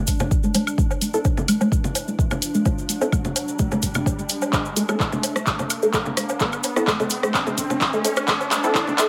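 A wet studio reverb with a short tail and a thinned, high-passed low end frames this quirky, cool minimal techno build-up, a nine-second cut from a longer piece running at 128 BPM in 4/4 with a light swing on the sixteenths. A swarming, tense drone on D4 sits in the background from the very start, slow and granular with its own reverb and a sidechain pump, while a deep electronic kick and a punchy analog drum machine with handclaps and hi-hat hit up front from 0.1 seconds. A grainy, close acoustic cabasa joins them, alongside overdriven, layered electronic congas, woodblock and rim click soaked in tape echo. The juicy, squelchy blip pluck riff around A3 carries a moving notch, phaser, lush chorus, 12-bit sampler grit and dub echo, and a muted, chorused dub chord stab between C4 and A4 enters at 1.1 seconds with tape echo trailing it. Filter sweeps on the pluck, the stab and the whole mix run the full length as a background riser climbs, and a drum fill comes in from 4.5 seconds to push the build-up forward.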